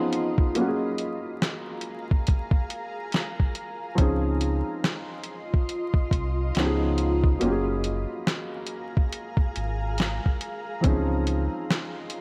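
A lazy 70 BPM groove in 4/4 with a 59% swing on the sixteenths carries this dreamy, mellow lo-fi hip hop excerpt, cut from a longer piece and wrapped in vinyl crackle, light reverb and digital ambience. The sampler-style drum kit enters at 0.1 seconds, compressed and pitched down, with a thumpy kick, a fat snare and hi-hat sitting muffled but up front. A felt-muted upright piano plays soft, intimate accompaniment with short sustain through a low-pass filter, while a granular cloud pad holds sustained chords above it, cloudy and evolving, its detuned sine and sawtooth unison blurred by slow attack, long release and its own reverb yet still bright on top. The opening four seconds form a break before a deep, full sine sub bass with octave arrives at 4.0 seconds, fast in attack and sustained, staying up front until 11.5 seconds. The harmony drifts between Db9, Gbmaj9 and Dbmaj9, keeping the mood hazy and unhurried.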